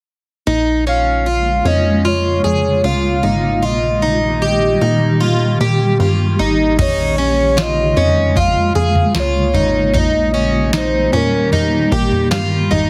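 A shimmering twelve-string acoustic guitar picks out octave-doubled arpeggios over a plucky, punchy analog bass in this melancholic, ethereal dream pop excerpt at 76 BPM in Bb dorian, moving between Bbm7 and Eb/Bb. A round, dark octave-layered synth lead carries the melody through chorus, phaser and digital delay, while a blurred granular cloud pad holds sustained chords in its own built-in reverb. At 6.8 s a booming analog drum machine enters with a deep kick, crisp snare, toms and crash, all under a heavily compressed, radio-like sound.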